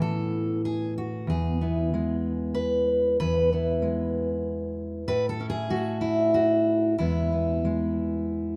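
A rubato 3/4 lilt at around 94 BPM carries this warm, hopeful folk excerpt in E major, where a solo fingerpicked steel-string jumbo acoustic guitar, full-bodied and up front, spans E2 to B4 and moves from Aadd9 to E, then to A at 5.1 seconds and back to E at 7.0 seconds, set in light reverb with lossy compression artefacts.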